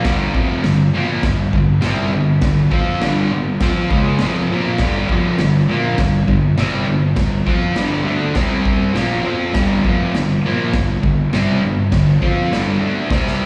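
This short cut from a longer piece sounds like a live gig heard through the venue's PA, with the reverb of a recital hall around it. It is swaggering, raw garage rock in straight 4/4 at 101 BPM. A fuzz guitar, bright and double-tracked, drives the riff up front, compressed and distorted with a slapback echo, ranging from F2 to F4. It sits on G5, moves to C5 at 8.4 seconds and returns to G5 at 9.0 seconds. An acoustic garage drum kit, also up front, has a punchy kick, a medium-tuned snare and a crash cymbal, and sounds saturated and gritty in a pumping stone room with a rolled-off top. A drum fill closes the passage from 13.1 to 13.5 seconds.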